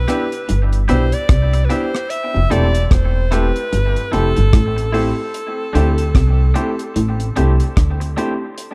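Lovers rock reggae, smooth and tender, cut from a longer piece: an edgy, forceful alto saxophone carries the melody with vibrato and tape echo, over a woody, thumpy pizzicato upright bass and a dry, up-front drum kit of tight kick, hi-hat and rim click. A polished grand piano supplies accompaniment through Cmaj7, Fmaj7 and D7sus4 with its own tape echo, a bright, twangy electric guitar adds clean picked stabs, and from 0.5 s a slightly broken-up, lo-fi guitar riff sits in the background with subtle chorus. The production is dark and warm, with light reverb and a small room ambience.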